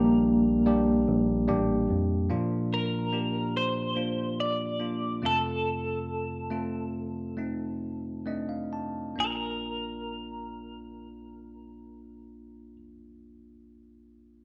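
A straight 4/4 pulse at a slow 65-73 BPM carries this tender, emotional pop ballad in Bb major, which eases into a slowdown after 2.3 seconds as the harmony moves from Gm/Bb through Bb and F. Up front, a twangy, compressed twelve-string electric guitar picks the melody with tremolo and slapback echo, while a bright, bell-like tine electric piano, heard through its built-in speakers, supplies the accompaniment. A clean tine electric piano bass is present only for the opening 2.3 seconds, a tine electric piano fill arrives at 7.8 seconds, and a wet spring reverb with digital ambience wraps this short excerpt from a longer piece.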